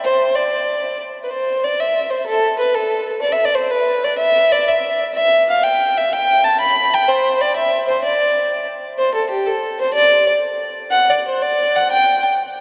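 A lone fiddle with a dark, woody, slightly boxy tone and light vibrato carries this short Celtic folk excerpt, bowed up front by a single player in a register from G4 to B5. The tune moves in a lively, spirited 6/8 at 125 BPM with a straight feel, its dark mood set against its energy. A wet cathedral reverb with a 5.3-second decay places the fiddle in a vast, echoing space, and the playing shifts into a new section at 9.0 seconds before the fiddle stops at 12.2 seconds.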